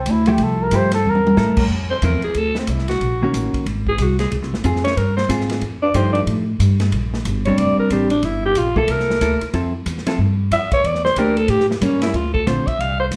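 A brisk 184 BPM swing in 4/4 drives this playful, sophisticated small-group jazz excerpt in F major, with woody pizzicato upright bass and a polished, airy drum kit of dark cymbals and punchy kick running throughout, while a clean, compressed hollow-body guitar comps underneath. A mellow flugelhorn with vibrato, a soft attack and plate reverb opens with a brief solo, capped by a drum fill at 1.0 seconds, before a raspy, growling alto saxophone takes over at 1.7 seconds with scooped notes and a smooth top. The harmony moves through rich extended chords such as Fmaj9, Dbmaj7, C13 and A7b9, and the whole group sits a little back in a lively club room.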